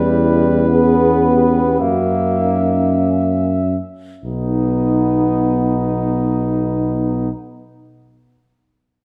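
A light reverb gives this short excerpt of a brass band a soft, spacious sound. It's a serene, lyrical hymn-like piece in B major and 4/4, taken at a rubato pace of 46-58 BPM that slows over the first 4.2 seconds before the chords settle from C#m7b5/E through F#7 onto B. A mellow cornet carries the melody between D#4 and E5 with a light vibrato, while a very quiet, dark French horn section sounds from a distance with a second line beneath it. A bright trombone, also touched with vibrato and set back in the room, joins a dark, smooth-topped euphonium in the background as accompaniment. Up front, a mellow tuba anchors the bass from B1 to F#2, and all five parts play together for the full 7.3 seconds.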